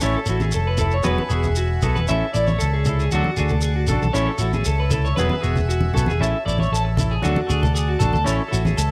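Heard in a small room with light reverb, this short cut from a longer highlife guitar band piece feels carefree and joyful in a straight 4/4 groove. Up front, a clean electric guitar plays bright, twangy picked arpeggios dressed in lush chorus and slapback echo, while a round, dark fingered electric bass sits equally forward underneath. A semi-hollow electric guitar adds picked, hollow-body accompaniment in a lower register, and an accordion holds reedy, airy sustained chords high above. The percussion pairs a grainy, close and dry shekere with low-tuned, thick-skinned congas played with soft hands in the background, the congas entering at 0.4 seconds. The chords cycle through A, Eadd9, A and D, coming around twice before landing back on A.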